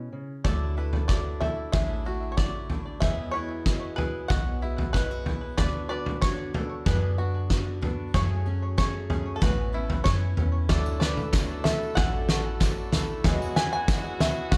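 A loose indie drum kit with a fat snare and punchy kick sits up front in this nostalgic, hopeful indie folk excerpt, cut from a longer piece with a building arrangement, while a bright, twangy bluegrass banjo carries the melody through a digital delay and a second banjo in the background plays arpeggios through the same effect. A fingerpicked steel-string acoustic guitar, which stops at 13.2 seconds, and a boxy, swing-style picked guitar provide accompaniment over a soft, round FM bass. At 10.7 seconds a bowed fiddle with light vibrato adds a second line, joined by a smooth vintage grand piano, a reedy, breathing harmonium and a jingly tambourine, with crisp group handclaps arriving at 11.3 seconds, all set in light reverb and a dark, warm production.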